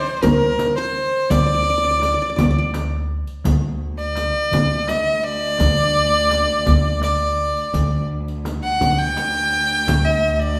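A 6/8 pulse with a straight feel carries this slow, melancholic and soulful passage from an Arabic maqam ensemble, cut from a longer piece. The darbuka, with its small, high clay-shell voice played with soft hands, sits in the background alongside a deep, large frame drum struck with hard hands and a riq with dark jingles, all entering at 0.2 seconds. An upright bass plucks a woody, dark foundation throughout. Up front, a single clear violin sings the bowed melody with smooth, even vibrato, joined at first by a bright-edged, plectrum-plucked qanun on a second line that drops out at 3.6 seconds. From 3.5 seconds a rich, nasal cello adds a focused bowed drone as the music moves into its second section. The band plays live in one room, bathed in a large, wet studio reverb.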